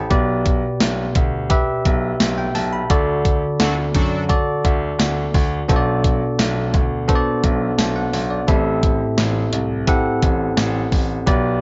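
A bell-like, up-front tine electric piano opens this nostalgic, dramatic 1980s-style pop fragment, joined at 0.1 s by a polished grand piano holding the low bass and a thumpy, tape-tinged 12-bit drum machine of kick, medium-tuned snare, hi-hat and tambourine bathed in gated reverb, while a band accent from 2.9 s brings a brief, bold burst of fat, detuned analog synth brass stabs with chorus at 3.6 s as the chords move from G/B through D and Bm7 to Am7 in a lightly reverberant, softly rounded mix.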